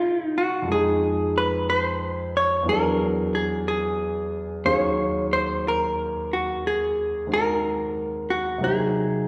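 A lush hall reverb with a long, church-like tail surrounds this short jazz ballad fragment, cut from a longer piece, giving the smoky, melancholic mood plenty of air. Up front, a vintage hollow-body electric guitar carries the melody in a clean, picked tone that is dark and compressed, staying in a narrow middle register. Beside it, a concert grand piano supplies the accompaniment with a natural, warm character and deep bass that reaches down low beneath the tune. The feel is slow and swung, and both instruments play together from the opening moment through to the cut at 9.3 seconds. Rich extended chords drift past underneath, moving from Bbm9 through Fm7, E9 and Ebm11 before settling on a shadowy Cm7b5 at 8.6 seconds.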